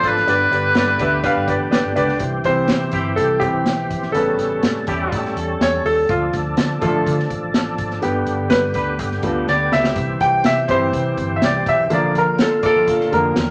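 A clear, up-front baby grand piano carries this joyful, uplifting slice of uptempo 1960s-style soul at 124 BPM in C major, taking a solo from 2.2 s to the end. A distant, roomy oboe with light vibrato states a brief classical-style melody at the very start, while a gritty, overdriven tonewheel organ holds thick sustained chords with key click, chorus vibrato and a slow rotary speaker. Underneath, a dark, round, foam-muted electric bass and a vintage kit with a punchy kick, medium-tuned snare and rolled-off top drive a straight 4/4 groove, with a drum fill at 9.5 s. A twangy, slightly broken-up guitar picks a lo-fi riff in the background, and a tight, mellow horn section adds a jazz-style second line from 2.9 s. The harmony moves from G through C, A7 and Dm, then returns to G and C before landing on Bb, all set in a wet club reverb in this extract cut from a longer piece.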